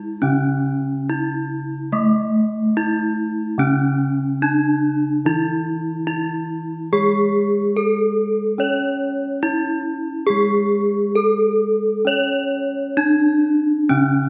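Uneven beats pulse at 71 BPM in 4/4 through this hypnotic gamelan passage in C# pelog, cut from a longer piece, with a shift in the music at 1.9 seconds. One bronze metallophone carries the melody up front, struck with a horn mallet for a bright, close-miked, dry tone whose paired tuning produces shimmering beats. A second bronze metallophone, played with a wooden mallet and set lower in the mix, supplies a mid-forward ringing accompaniment, and the two sit in a reverberant recital hall.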